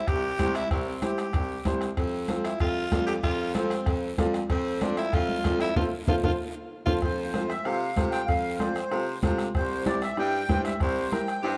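A growling, breathy tenor saxophone plays a gritty solo up front from the start of this joyful, sunny cumbia at 190 BPM in F major. Beneath it are a clear baritone saxophone bass line, a woody upright piano, a soft-beater bombo, hard-handed congas, a raspy guiro and ringing metal-shell timbales. A drum fill and band accent close the solo from 5.8 to 7.0 seconds, after which a reedy, sweet accordion with light tremolo tuning takes the melody, and the band sits back in a moderate plate reverb as the harmony moves between C and F.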